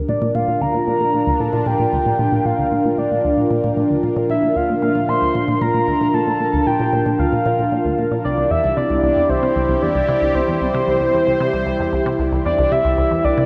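Ambient, sequencer-driven space music with an expansive, luminous mood, in which a juicy, squelchy resonant blip pluck riffs low with chorus, phaser and delay while an evolving, full-bodied sweeping pad holds sustained chords and a round, mellow octave-layered synth lead sings the melody with vibrato and delay, all afloat in a dreamy, reverb-soaked hall as a filter sweep runs throughout and the harmony shifts from Bb to C at 8.2 seconds in this fragment of a longer piece.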